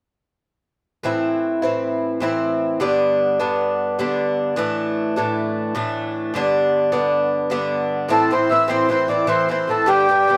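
Celtic folk in a wild, dark and lively 9/8 at 102 dotted-quarter beats per minute in A minor, cut from a longer piece, opens at 1.0 s with a metallic, double-strung Irish bouzouki picking a low accompaniment through Am, G, Dsus2 and G before a reedy, full, dry accordion joins up front with the melody at 8.1 s as the harmony returns to Am, all caught by close, detailed microphones in light reverb.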